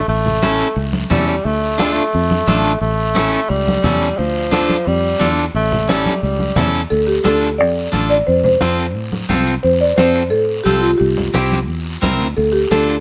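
A buzzing marimba struck with medium hard mallets carries the melody from 6.9 s, its woody, dry hardwood bars sitting up front with an airy edge as the music settles into D minor. This is a passionate, driving cumbia excerpt at 176 BPM in a straight 4/4, cut from a longer piece. Before the marimba enters, a clear tenor saxophone with light vibrato and a smooth, pop-style top plays a solo second line until 6.7 s, moving over alternating A and A7 and Dm chords before the harmony shifts through F and C back to Dm. Underneath, a fingered electric bass gives a round, foam-muted, amped foundation up front. A twangy, picked electric guitar at the edge of break-up adds warm accompaniment. Ringing, medium-tuned congas played with soft hands sit close in the background, while a raspy guiro scrapes lightly in a live room, all framed by a light reverb.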